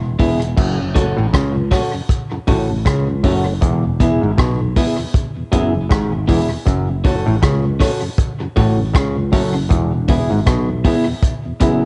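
Hypnotic, serious roots reggae cut from a longer piece, where an up-front vintage drum kit with punchy kick and dark cymbals anchors a bright, growly fretless bass with ensemble chorus, a picked, compressed electric guitar at the edge of break-up with warbly pitch drift and tape echo, a stringy overdriven clav riff that enters at 0.6 seconds, and a round tonewheel organ in the background with slow rotary speaker and chorus vibrato, the parts moving between E and F# minor in a small room on a dim home cassette recording.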